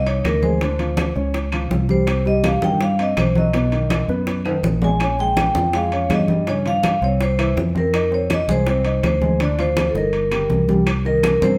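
A straight 4/4 Afro-Cuban jazz groove comes from ringing congas, vintage metal-shell timbales, and round, low-tuned bongos and woody claves in the background, with drum fills at 4.5 and 10.0 seconds, in this sophisticated, fiery excerpt cut from a longer piece. Up front, a close-miked, dry vibraphone played with medium hard mallets and the motor off carries the melody over a warm, amped fingered electric bass, while a smooth, vintage grand piano with short sustain supplies the accompaniment through chords such as Dbmaj7#11 and Gm11. The band plays live together in a large studio with moderate reverb.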